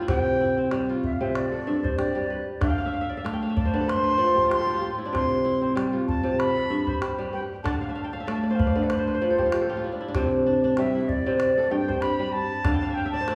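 A mellow, fingerpicked kora opens the piece at 0.0 seconds, its ringing arpeggios sitting up front and spanning a broad range in this joyful, warm-hearted passage of West African string music with a gentle swing. A reedy wooden flute joins almost at once with an airy melody coloured by vibrato and crisp attacks, while a small calabash keeps a close, dry pulse underneath. The kora adds crisp fills at intervals as chords built on C, G and D shift beneath it, broken by brief moments where the harmony drops away. At 10.2 seconds the music moves into a new section where the flute takes a solo, and the kora slips in one last fill before the cut at 13.3 seconds. A lush recital-hall reverb places the ensemble somewhat back in the room, with a faint sense of a smaller space around it.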